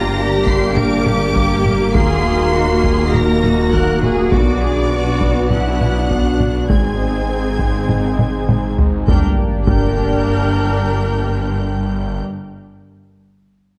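Close, dry taiko drums struck with heavy sticks drive this futuristic, relentless hybrid orchestral and electronic film cue, entering at 0.5 s beneath a growling, distorted saw bass and lush, bowed double basses and cellos. High, clear violins carry an intense melody over a second, focused violin line. Background violas accompany while dark French horns and a smooth analog pad with chorus sustain the chords, and a soft, ringing harp-like synth pluck plays arpeggios until 9.0 s. A drum fill leads into a huge sub drop at 9.1 s, all set in a moderate scoring-stage reverb with a dark, warm production.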